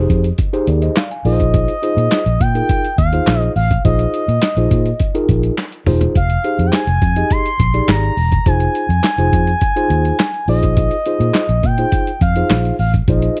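Early-eighties boogie funk at 104 BPM, danceable and slick, built on a mellow tine electric piano played through built-in speakers and a dark, round, foam-muted fingered bass up front, with a muffled, pitched-down sampler-style drum kit with a thumpy kick and tape warmth, crisp group handclaps from a live room, and a smooth sawtooth synth lead with chorus and vibrato entering at 1.3 seconds, all moving between Fm7 and Bb9sus4 with a drum fill at 5.6 seconds in this dry, close, 1970s-style studio excerpt.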